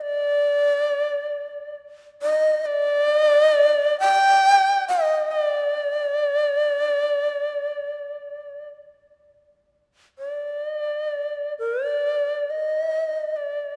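Austere and calm, this fragment of Japanese traditional chamber music in free time features a solo end-blown bamboo shakuhachi, tuned to A4 = 437 Hz, playing between D5 and G5 with a breathy, reedy tone, tongued chiff and vibrato, close and up front in a wet church reverb, moving into a new section at 9.7 seconds before the cut at 13.8 seconds.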